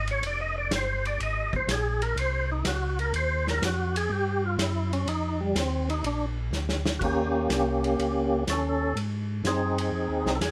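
A fat, lightly overdriven tonewheel organ with percussive bite, key click and slow rotary speaker solos up front through the first 7.0 seconds of this greasy, soulful soul jazz organ trio at 124 BPM in swung 4/4, over a round, dark organ bass line and a vintage acoustic drum kit with dark cymbals, punchy kick and a pumping small-room sound, whose fill at 6.5 seconds leads into a new section built on Eb7 and Ab7.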